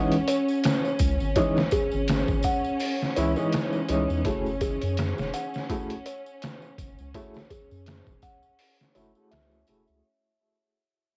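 A swung 83 BPM groove of gritty, pitched-down, overdriven sampler drums with a thumpy kick and a background tambourine drives this dark, cinematic trip hop fragment. A woody, slightly detuned upright piano with tremolo and tape echo sits up front over rich bowed strings, while a delicate, tinkling music box plays arpeggios and a round, deep analog bass joins at 1.0 s, the cassette-recorded mix carrying vinyl crackle and fading out as C#madd9 moves to F#m9.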